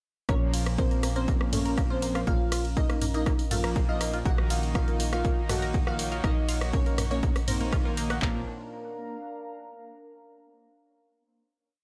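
A dry, gritty hardware recording with light digital ambience carries this short, dark and melancholic melodic techno piece in Bb minor at 121 BPM in a straight 4/4. From 0.3 seconds it is a full drop: a punchy analog drum machine sits up front with a four-on-the-floor kick and claps, while a house drum kit adds tape-warm programmed hats, ride, rim clicks and low toms, both in studio reverb. A tight sequencer bass holds the Bb root, and a detuned, wave-folded sequenced synth runs a 16-step arpeggio pattern in the background with chorus, phaser and analog delay. Above them, a smooth, expressive sawtooth lead plays a repeating riff with vibrato and tape echo, doubled an octave higher by a crystalline wavetable pluck, as a brassy analog pad fires sparse echoing chord stabs in power voicings. The lead, pluck, arpeggio, pad stabs, bass, strings and the kit's hats, cymbals and toms pump against the kick, and from 1.1 seconds a very quiet, warbling lo-fi pad drifts through slowly shifting chords. 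The harmony moves from Bbm to Ebm7/Bb at 4.3 seconds, where an earthy chamber string section joins with sustained chords, before the piece settles on a final Bb major chord at 8.2 seconds.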